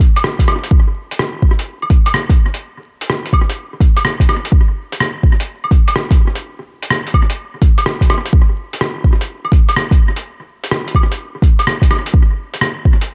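This future garage clip, cut from a longer piece, carries a melancholic, rainy mood over a swung sixteenth-note feel in 4/4. A deep, layered electronic kick drum sits up front from the start and runs to about 13 seconds, its produced tone carrying a tape-warm weight. Alongside it, a lo-fi sampler-style kit of claves, hi-hat and rim click plays throughout, sounding pitched down, muffled and compressed, as if re-recorded in a small room. That kit is roughened with overdrive and trailed by analog delay, and it sits quieter than the kick. The mix is echo-heavy with a light touch of reverb and a bed of vinyl crackle, giving the whole groove a hazy, worn-in atmosphere.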